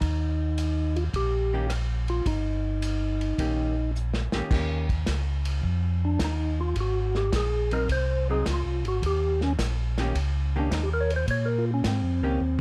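Greasy and soulful, this short cut from a longer soul jazz organ trio swings at 106 BPM in Eb mixolydian, with a flute-like, percussive tonewheel organ carrying the melody and taking a solo from 4.5 seconds over a round, key-clicking organ bass, both turning through a slow rotary speaker, while a clean hollow-body jazz guitar comps from 1.5 seconds and a small-room soul drum kit with dark cymbals and a tight kick plays a fill at 3.9 seconds, all in a dark production with light reverb.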